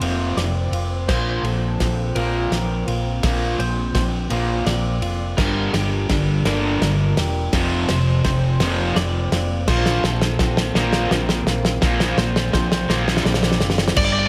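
A loose indie drum kit sits up front with a fat snare, punchy kick and dark cymbals, playing one long fill across a build-up in this soaring, cinematic post-rock passage in 6/8, cut from a longer piece. Beneath it, a round hollow-body electric bass holds the low end while a compressed fuzz guitar drives a riff, joined at 5.4 seconds by a second, brighter fuzz guitar riffing in the background. Further back, a dark electric guitar at the edge of break-up and a clean, bright twelve-string electric guitar play arpeggios, both touched with slapback echo. A very quiet, warbling, nostalgic pad holds sustained chords with a lo-fi, detuned character, moving through Fsus4, Bbsus2 and Gm7. At 14.0 seconds a biting overdriven guitar steps forward with a single melody note, all of it set in a moderate concert hall reverb.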